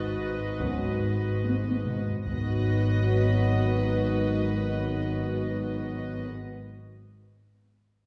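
Heard from further back on a wet scoring stage, this tense, eerie excerpt of suspense film score moves at 71-74 BPM in G# minor, with sul tasto string sections floating over a dark cello line and a close double bass, while a violin melody and a rich, distant second violin line float above a pure viola accompaniment and a high, woody violin texture hovers in the background. A bright, ringing concert harp riff sounds very quietly over the opening Badd9/G# chord until 2.3 s, as a shadowy French horn section and a smooth trombone section hold sustained chords from 0.6 s. Hard-stick taiko drums boom from a large room with a fill just before the shift to G#m7, and round, soft-mallet timpani enter at 2.3 s.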